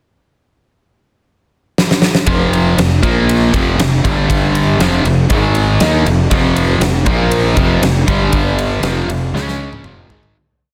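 Dense, heavily limited and lightly reverberant in a studio space, this aggressive hard rock piece in F minor runs at 119 BPM and opens with a drum fill at 1.8 seconds from a huge arena kit with a fat snare, punchy kick and bright cymbals. At 2.3 seconds an up-front cranked stack guitar and a hollow-body semi-hollow guitar, overdriven and tinted by phaser in the background, hammer out a power-chord riff over F5, Bb5, G5 and Ab5. A growly fuzz bass doubles that riff in driving eighth notes. The kit plays another fill as the piece fades out from 8.3 seconds toward a closing Fm chord.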